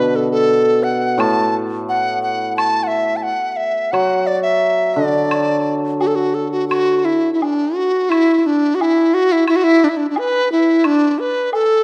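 A reedy, buzzing large dizi carries the graceful, pastoral melody up front with vibrato and a crisp attack, over a shimmering, ringing hammered dulcimer that accompanies from the start until 7.1 seconds, while a dry woodblock enters at 1.2 seconds in the background, giving this short excerpt of Chinese traditional chamber music in D gong mode a rubato 2/4 feel around 87 BPM, set in a moderate stage reverb with a dark production.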